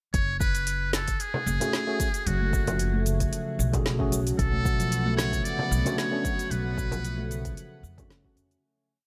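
A buzzy, breathy trumpet with a metal mute carries a jazz-style motif over tape echo and shimmer reverb in this earthy, mystical organic downtempo piece at 113 BPM in F# harmonic minor, built on a woody, thumpy pizzicato upright bass pumping beneath a deep electronic kick and a deep house kit of cabasa, smooth hi-hat and snare, with soft frame drum hand playing joining at 1.3 seconds, syncopated rootless stabs from a bright tine electric piano under a filter sweep, ringing stainless-steel handpan arpeggios, and distant bowed strings floating in at 4.4 seconds before a fade-out from 5.8 seconds.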